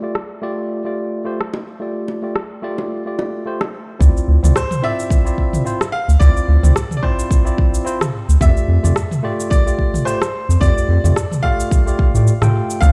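Sunset chillout with a relaxed, smooth feel and a swung groove, this excerpt opens on a bright, barky electric piano with delay carrying the accompaniment, joined almost at once by a deep house kit of cabasa, rim click and filtered toms, while round, low-tuned bongos play briefly from 1.5 to 3.7 seconds. At 4.0 seconds a deep, round analog bass and an up-front layered electronic kick drop in together, and a clear, slightly boxy grand piano with tape echo carries the melody from 4.6 seconds. The dry parts sit in a bare, roomy space heard through a big sound system.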